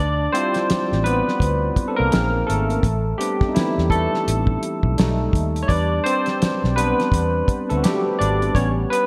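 At 84 BPM in 4/4, a 16th-note swing of 60% gives this short cut from a longer R&B and neo-soul piece an unhurried, introspective and soulful lean, centred in D dorian. A cloth-damped drum kit enters at 0.3 s with hi-hat, a tight kick and a fat snare; the kit is dry, dark and thuddy with a rolled-off top, sits up front, and carries a gated reverb. Beneath it, a vintage fingered electric bass sounds round and foam-muted through an amp, staying low between Ab1 and E2 until it stops at 8.8 s. The barky tine electric piano is the star, soloing across the whole 9.1 s with a bright, clean tone through a combo amp, treated with analog chorus and placed up front. It moves through Dm11, Bbm11, Am11, Baug7, Em7 and finally A9. The whole is framed by a lush hall reverb and a bright 1980s-style digital production.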